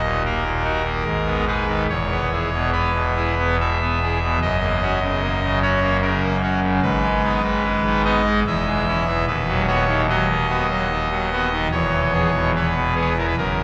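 A cathedral's long, wet reverb, lingering around 6.1 seconds, surrounds an up-front pipe organ playing alone on a brassy trumpet stop, its bright baroque voicing carrying a distinct chiff at the start of each note. This serene, majestic classical chorale moves at 73 BPM in a rubato 3/4, tuned to A4 = 443 Hz, and spans from deep tones at D#1 up to E5. The 13.6-second fragment of a longer piece passes through D#m, G#m, E and F#, returns to G#m, then moves through C#m/E and B/D# before settling on E.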